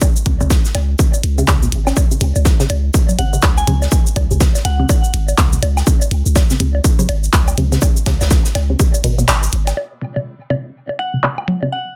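Minimal techno at 123 BPM in 4/4 with a swung sixteenth feel, quirky and hypnotic, cut from a longer piece and anchored by a punchy, overdriven electronic kick up front, a deep sine sub bass with a pitch-drop attack and sidechain pumping, and a squelchy sawtooth blip-pluck riff colored by chorus, phaser and delay. A tape-warm click kit with low-pass-filtered hats, claps, shaker and crash sits beside delayed analog bongos, woodblock and congas, while an acoustic shaker and snare hover airily in the background. A gentle FM bell melody surfaces at 3.2 seconds, the kick stops at 8.9 seconds, and a filter sweep on the drums carries the final stretch from 9.8 seconds, inside a dense, heavily limited master with light reverb.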